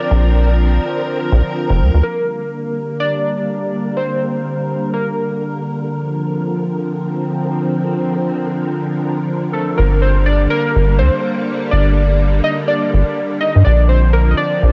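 This eerie, intricate IDM piece in G minor, cut from a longer work, opens with warbling lo-fi synth keys carrying the melody over a silky string machine that holds sustained chords. A deep, rubbery acid bass joins almost at once, its resonant, dark filter pluck sitting louder than the other parts, with tube saturation adding grit. At 124 BPM in 4/4 with a light swing on the sixteenths, the harmony moves between Bbadd9 and G minor. The keys sound detuned and nostalgic, with ring modulation, chorus and dub echo giving their tone a hazy, unsteady shimmer. The string machine has a vintage, soft character with ensemble chorus, and a filter sweep reshapes it through the middle stretch while the bass rests. The keys fall silent at 5.6 seconds and return at 9.5, and the bass rejoins at 9.8 to close the passage, all within a light reverb.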